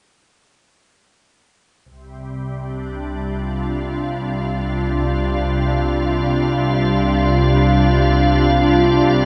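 Floating in free time, this weightless, peaceful ambient fragment, cut from a longer piece, fades in from 1.9 to 9.3 seconds on a single sustained Csus4 chord. A soft, organ-like pad sits up front with pure, warbling, detuned chorus and shimmer reverb, while a dark, bowed double bass section holds a low C beneath it with a nasal, gut-string tone and light vibrato. A huge, wet reverb with a long 7.8-second decay surrounds the sound, and the top end is gently rolled off.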